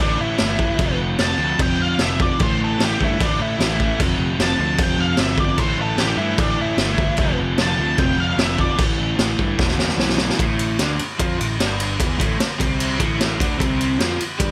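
Swaggering and raw, this 150 BPM garage rock excerpt in A minor drives a double-tracked, overdriven rhythm guitar riff and a punchy, fuzzed picked bass against an up-front, gritty acoustic drum kit with a medium-tuned snare and rolled-off top, while a dark octave-fuzz lead guitar carries the melody until 8.8 seconds, and a drum fill at 9.6 seconds leads into a closing section built on A minor.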